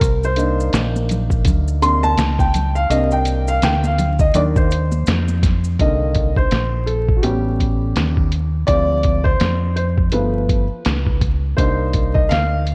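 Smoky and nocturnal, this jazz-hop excerpt of a longer hip hop piece sits at 83 BPM in C dorian with a swung sixteenth feel, its upright piano taking a woody, boxy solo with audible action noise and long sustain, over changes that move from Cm7 through A7, Dm7b5 and G7 back to Cm7. A round, dark fingered electric bass and a muffled, pitched-down sampler-style drum kit with a thumpy kick and fat snare sit up front beside the piano, while close, dry maracas and congas with hard hands add quieter color until 5.8 seconds. The dreamy mix is soaked in plate reverb and vinyl crackle.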